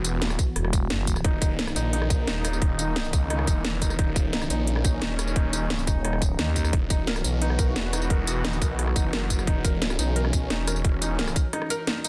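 A snarling, distorted sawtooth bass drives this dark, technical drum and bass excerpt at 175 BPM in straight 4/4, tuned to A4 = 439 Hz: it is detuned and aggressive, with tube saturation, a moving notch and bright, compressed grit, pumping under the sidechain. A thick FM bass growls up front in two short bursts, entering at 0.6 and again at 5.9 seconds. The layered electronic kit pairs a tight kick with a cracking snare, metallic hats, rim clicks and tambourine, with a tape-warm, small-room character. Behind them sits a resonant, evolving pad of detuned saws that sustains chords with a filter swell, chorus and pumping. From 1.2 seconds, a soft, felt-muted upright piano adds intimate arpeggios through digital delay, its action noise audible. The harmony moves between E5 and Eb5 over light digital ambience in a dense, heavily limited master, giving a mechanical, futuristic feel.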